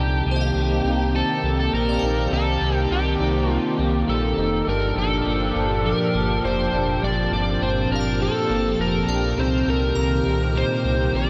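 Haunting and melancholic, this dream pop excerpt in C dorian drifts at 102 BPM in a straight 4/4 over Cm7 and Gm7, with an up-front overdriven slide guitar carrying the melody through analog chorus, shimmer reverb and tape echo, a smooth, warbling detuned analog pad holding sustained chords, a slightly broken-up electric guitar picking compressed arpeggios, a deep sine sub bass with octave anchoring the low end, and a bright FM bell with ensemble chorus and phaser glinting in the background from 0.3 to 3.5 seconds and again from 8.0 seconds, all soaked in a huge ambient reverb with a 7.4-second tail.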